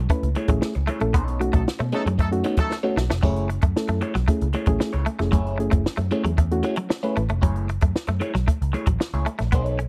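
A cool, sly funk groove at 114 BPM in F# dorian opens on a bright, tremolo-treated semi-hollow guitar riff over a dark, foam-muted picked bass and a compact cocktail drum kit with a high-tuned snare and punchy kick, while a slightly broken-up guitar through a small old amp adds phaser-coloured accompaniment and a worn, lightly overdriven reed electric piano with spring reverb plays stabs until 7.2 s, and a distant, tight horn section with octave doubling briefly carries a second line from 1.5 to 2.8 s during a band accent that closes with a drum fill, the whole take recorded dry and close in 1970s style as the chords move from F#m9 to B9 and back.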